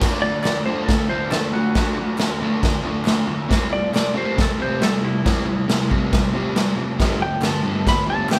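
The recording has the feel of a band playing live together in one room, with a light reverb around it. This short cut from a longer garage rock track moves at 137 BPM in a straight 4/4, raw and swaggering in D mixolydian over chords of D, C and G5. Up front, a double-tracked fuzz guitar picks a warm, distorted riff in its low-to-middle range, while a punchy, gritty drum kit crashes, kicks and snaps a medium-tuned snare in a bright, pumping stone room. From 0.2 seconds a clean, compressed lap steel guitar takes the melody as a slide solo, fingered high up with volume swells and a warm tone. A very quiet group handclap, crisp and close, joins at 0.4 seconds and stays tucked beneath the band.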